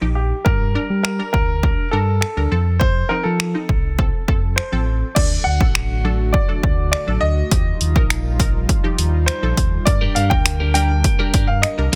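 A deep sine sub bass with octave and detuned sawtooth chord stabs, both pumping with sidechain, open this energetic, bittersweet dance-pop excerpt in G minor at 102 BPM. Up-front analog drum machine kick, finger snaps, hi-hat and crash, with soft clipping on the snare, drive in at half a second, while an intimate grand piano with audible action noise carries the delayed melody. A shimmering, dark pulse-width pad enters at 5.2 seconds, and a clean, lushly chorused twelve-string electric guitar riff arrives at 9.9 seconds over a dense, heavily limited, dry mix.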